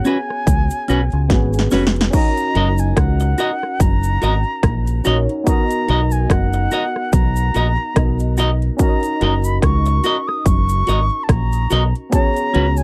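Tender and romantic, this lovers rock reggae excerpt sets a pure, vibrato-laden concert flute melody with tape echo over a bright, barky tine electric piano with overdrive and ensemble chorus, clean picked stabs from an up-front semi-hollow electric guitar, a quiet background cabasa, a punchy, layered big-room dance drum kit with metallic hats and a fill from 1.3 to 2.1 seconds, and a dark, round deep dub fingered electric bass entering at 0.5 seconds, all in a dry, close 1970s-style studio sound.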